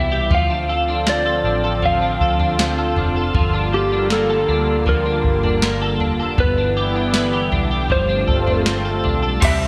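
Blissful and ethereal, this dream pop excerpt drifts at 79 BPM in a straight 4/4, cut from a longer piece. A dark, slightly broken-up electric slide guitar carries the melody, bathed in shimmer reverb and delay, while a twelve-string electric guitar picks clean, compressed arpeggios through ensemble chorus, shimmer reverb and delay. Underneath, a smooth, warbling analog sawtooth pad with a slow attack holds sustained chords, and a round, foam-muted fingered bass anchors the low end. A soft vintage rhythm box with a deep kick, crisp snare, tambourine, toms and crash cymbal enters at 0.3 seconds, its hits dressed in gated reverb. The harmony moves from Dm7 through Gm9 and Em7/G to G9sus4, and at 9.4 seconds a raw, overdriven garage guitar with tremolo and ensemble chorus briefly appears, all set in a plate-reverb ambience with bright 1980s-style digital sheen.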